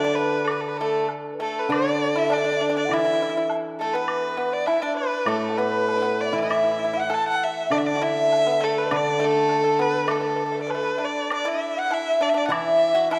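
A bowed erhu leads this pastoral, graceful piece of Chinese chamber music, its rich, smooth tone sitting close and up front with vibrato and portamento. A bamboo xiao floats behind it as a distant, airy second line, very quiet, with soft attacks and its own vibrato. A dry, percussive pipa, played with fingerpicks, adds a further line beneath. Low in the register, a hammered dulcimer gives shimmering, ringing accompaniment from the front of the ensemble. A bright woodblock joins in the background at 0.5 seconds. The music moves at 100 BPM in 2/4 with a flexible, rubato feel, and the opening theme returns at 11.3 seconds before this cut from a longer piece ends at 13.2 seconds, all set in a dark, warm production with a lush scoring-stage reverb.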